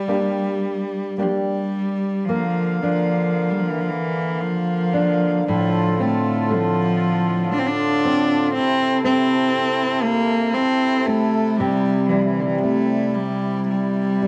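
A Celtic slow air in 3/4 at around 58 BPM, this mournful, longing fragment moves with uneven, rubato beats, led by a single warm, focused cello bowed with vibrato and placed close and up front. A dark nylon-string classical guitar, thumb-plucked, accompanies from the start through chords moving from Gm to Bb, F6/A, Am and C. A reedy, breathing pedal harmonium joins at 2.3 seconds with sustained chords, all set in a moderate echo-chamber studio reverb.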